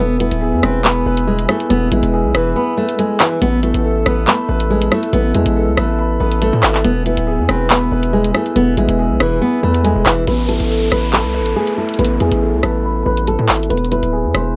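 Cold and tense, this excerpt is a half-time drill beat at 140 BPM in 4/4, cut from a longer piece and moving between E and Asus2 chords. A fingerpicked nylon-string guitar carries the melody with a full-bodied, fresh-stringed classical tone, softened by a low-pass filter and trailed by analog delay. Beneath it, a dark concert grand piano plays mellow, boxy accompaniment with deep bass and long sustain, also filtered. A glassy, ethereal glass harmonica holds pure, slowly blooming chords with gentle beating in the background until about 10.2 seconds, when a downlifter sweeps in. Up front, a distorted 808-style bass hits hard with a fast attack, a noise layer over its sine core, and decaying notes, while the electronic drill kit drives handclaps, rim clicks and warm hi-hats, its kick dropping out briefly from 2.6 to 3.4 seconds. The mix is dry and gritty, with little reverb, giving the whole beat a close, hardware-recorded edge.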